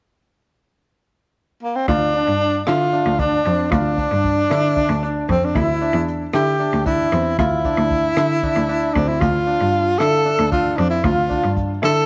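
Tense and intricate, this progressive instrumental excerpt moves in a straight 7/8 at 229 BPM in D minor, with a breathy, whispered tenor saxophone carrying the melody up front from 1.6 seconds, its scooped notes and vibrato soft-edged and intimate. From 1.9 seconds a bright, biting cello bows the bass line close and intense, a concert grand piano adds arpeggios with audible action noise, and a dark, rolled-off jazz brush drum kit with hi-hat, punchy kick and rim click sits in the background. The harmony shifts from Dm to a rootless C/D, Dsus2 and back to Dm, all bathed in a moderate echo chamber reverb.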